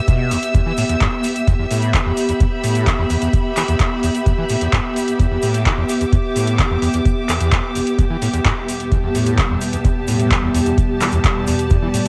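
Lightly reverberant and cassette-worn, this gritty, driving acid house piece sets a rich, smooth bowed string section up front, its vibrato-laden texture pumping against a deep analog electronic kick, while a squelchy, resonant, distorted sawtooth acid bass riff with filter sweep and ensemble chorus grinds beneath metallic analog drum-machine hats and handclaps re-recorded in a large room, a grainy egg shaker sits in the background, and a lush, detuned unison pad of sustained chords joins at 8.7 seconds.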